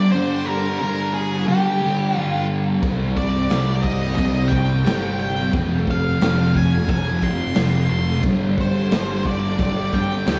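This excerpt opens with two fuzz guitars together: a thick, double-tracked rhythm guitar sits up front playing a dark, distorted riff with analog chorus, while an octave-fuzz lead guitar carries the melody above it, its warm, picked tone trailed by tape echo. The piece is hazy, brooding rock in the shoegaze and dream pop vein, moving at 89 BPM in a straight 4/4. At 2.8 seconds a growling picked electric bass enters, direct and amped with overdrive, alongside a raw garage drum kit of kick, snare and crash cymbal. The drums sound gritty and saturated, with a punchy kick, a medium-tuned snare and a rolled-off top that keeps them smooth despite a bright stone-room character. The harmony moves through G5, Csus2, F5 and Gsus4, and the whole mix is soaked in a lush hall reverb that gives it a dreamy, clouded feel.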